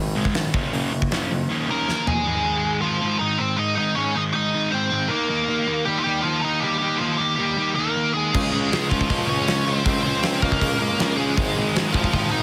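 A nasal lead guitar with a parked wah carries the melody up front from 1.7 seconds, its dark, overdriven picked line sitting at the top of this rowdy, rebellious punk rock excerpt in Ab major at 158 BPM. Underneath, a sludgy distorted guitar grinds out a riff through the whole clip, while a crunchy overdriven guitar adds its own riffing from the background at the start and again from 8.3 seconds. A big rock drum kit with a fat snare, tight kick and rolled-off top drives the straight 4/4 feel, dropping a fill just before the second section begins at 2.3 seconds, then sitting out until returning with the other parts. A clear, punchy tuba with scooped notes plays the bass line in the background, adding an unexpected vintage brass bottom under the guitars. The sound is dense and heavily limited with light reverb, giving the whole clip a loud, crowded modern edge.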